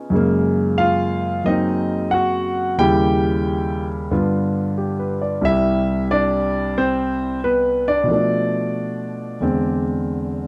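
Sophisticated and playful, this short excerpt of solo jazz moves at 90 BPM in 4/4 with a swung eighth-note feel. A concert grand piano carries the whole performance, ranging from a deep C2 bass up to G5, with an intimate, natural tone, long sustain and audible action noise, and it sits up front. The harmony opens on a Gbmaj9 and passes through Eb7b9 and G7 before settling into C major at 5.4 seconds with a Cmaj7. From there the second section turns through Bm7b5 to E7b13, a rich, colorful chord set that gives the passage its urbane character. A light reverb surrounds the instrument, keeping the sound close, and the recording breaks off at 10.5 seconds as a fragment of a longer piece.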